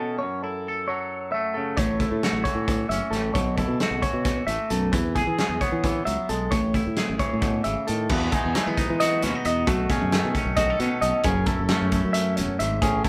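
Math rock and Midwest emo at a brisk 266 BPM in 7/8 with a wistful, bright mood, this excerpt opens with a scooped, twangy electric guitar comping from F#m7 through Amaj7 beneath a compressed, clean guitar's picked arpeggios, before a growly fingered bass and a loose, gritty indie drum kit with a fat snare and punchy kick join at 1.8 s, all of it played live in a wet small room as the harmony moves through Emaj9, B13 and F#m9 from 8.1 s.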